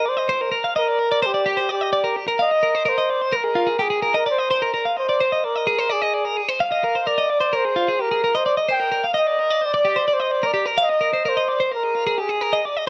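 In a straight 9/8 at 258 eighth-note beats per minute, this intricate, wistful rock excerpt has a clean, compressed twelve-string electric guitar picking arpeggios between F4 and F5, colored by spring reverb and analog delay as the harmony moves between Ebmaj7 and Fm7. Up front, a breathy trumpet sings the solo melody from G4 to G5 with a dark, whispered tone, vibrato and scooped notes that give it an intimate, pop-style character. Both parts play throughout the roughly 12.9-second passage, set in a moderate studio room.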